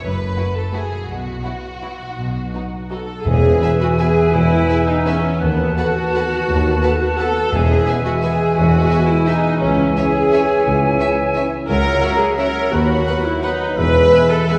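A rubato 3/4 lilt at 155-188 BPM carries this elegant, festive orchestral ballroom waltz in E major, where two violin section lines, one singing the melody and one a second line, float over mellow, ringing harp arpeggios, an even, up-front viola accompaniment, woody double basses and lush cellos, before a pure flute, smooth oboe, dark clarinet, soft-attack bassoon and distant tuba join at 3.3 s, a tight, very quiet French horn section adds sustained chords from 3.6 s, and round, calf-headed timpani sound briefly at 3.3 and 7.5 s, heard from further back in a wet scoring-stage reverb.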